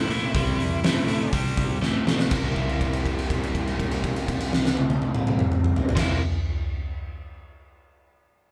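A straight 4/4 pulse at 122 BPM drives this swaggering blues rock power trio cut with a southern rock edge, set in C mixolydian over a C7 chord and taken from a longer piece. A dark octave-fuzz lead guitar with wah and distortion opens with a brief solo phrase that stops at 1.3 seconds. Up front, a bright, double-tracked, compressed overdriven guitar picks the riff, while a growly fuzz bass sits in the background, and a huge arena kit with a fat snare and punchy kick plays a fill near 1.8 seconds. From 2.3 seconds a held note rings on, and the band sounds live in one room with light reverb.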